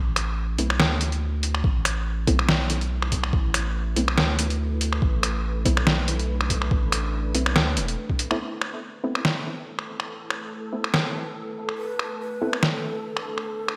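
Deep dubstep excerpt in A minor at 142 BPM with a half-time, swung feel, dark and meditative, where muted, detuned dub chord stabs with chorus and dub echo undergo a filter sweep over a thick, saturated sub bass that stops at 8.0 s, gritty, pitched-down sampler-style drums with overdriven snaps, hi-hat and an up-front snare treated with gated reverb, a thumpy overdriven electronic kick, a moody sawtooth ambient pad in the background from 3.0 s, an airy wind-like noise texture, and a breathy, hollow shakuhachi melody with vibrato and dub echo entering at 11.8 s, all in a bright 1980s-style digital production with light reverb.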